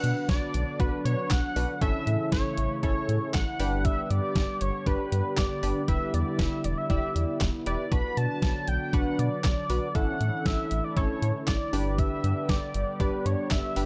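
An overdriven, detuned 8-bit digital drum machine sits up front with a thumpy kick, snare, hi-hat and handclaps, driving this cool synth-pop excerpt in B minor at 118 BPM, alongside a deep, round analog bass, a punchy, funky polysynth comp with a filter pluck, a shimmering chorused pulse-width pad holding slow-attack chords, and a bold, bright octave-doubled lead with vibrato carrying the melody over a Bm, A, G, Em7 progression, all in a dark production with light digital reverb.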